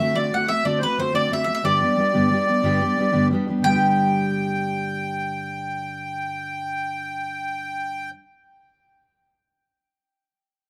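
A small room's reverb surrounds this rough home demo mix, a short cut from a longer Celtic folk slide in 12/8 with a cheerful, bright mood. Up front, the accordion carries the melody with a reedy, airy tone and a slow beating shimmer. Beside it, a mandolin plays a second line in the same register, its picked double strings giving a round, acoustic sound. Also up front, a fingerpicked jumbo steel-string guitar supplies a dark, full-bodied accompaniment from the low end. The passage moves from a D7 chord to G and shifts into a new section at 3.6 seconds, with the guitar ringing on briefly after the other two parts stop at 8.1 seconds.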